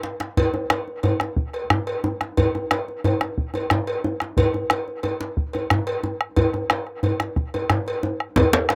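Earthy and driving, this short cut from a longer West African traditional piece for drum ensemble rolls along in 12/8. A medium-tuned djembe, compressed and saturated with a soft-handed touch, opens with a brief fill. A round, close and dry bombo joins at 0.2 seconds, and a metallic, distant cowbell with slapback echo enters at 0.4 seconds. A second, deep djembe sounds only briefly near the end, at 8.4 seconds, and the outdoor recording carries a light reverb.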